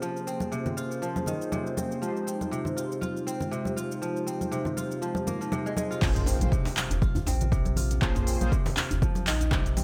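Crisp, fingerpicked kora arpeggios and dark, detuned synth brass stabs with chorus and cassette tape color pump with sidechain and digital delay over a deep house kit of smooth hats, handclaps, shaker, toms and crash cymbal, joined at 0.4 seconds by ringing, dry congas in this hypnotic, spiritual afro house excerpt, until a drop at 6.0 seconds brings in a punchy layered kick, a round, tube-saturated analog bass, a background djembe with metal rattles and a very quiet electronic impact, all under light reverb.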